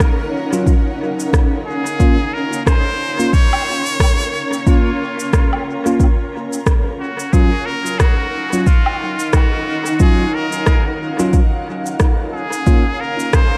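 Hazy and meditative, this ambient dub fragment, cut from a longer piece, moves at an easy swung pace over a hovering cloud of sound. A granular pad holds sustained chords throughout, its detuned, blurred texture slowly evolving with a bright edge and its own built-in reverb. A deep, tape-tinged electronic kick sits up front, while a quieter kit of rim click, cabasa and woodblock, also re-recorded in a large room, trails off into dub echo. From 0.5 seconds a bell-like tine electric piano adds clean, direct stabs that also ripple through echo, and at 1.7 seconds a solo trumpet with a straight mute enters with a nasal, brilliant melody played in a classical style with vibrato. The harmony drifts between Ebm7 and Bbm, and a light digital ambience gives the whole mix a soft sense of space.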